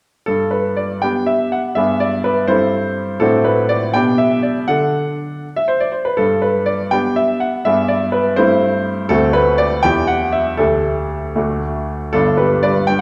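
Swaying in a lilting 6/8 with supple rubato, this playful, elegant classical-period sonatina fragment is carried by a single baby grand piano, heard from 0.3 to 13.0 seconds. The piano sounds bright, brilliant and natural, with short sustain and an up-front presence, spanning a range from deep bass G1 up to G5. Its harmony moves through a pointed E7#9/G colour and a Dsus4 before settling home on G at 12.1 seconds, all set in a reverberant recital hall heard from further back in the room.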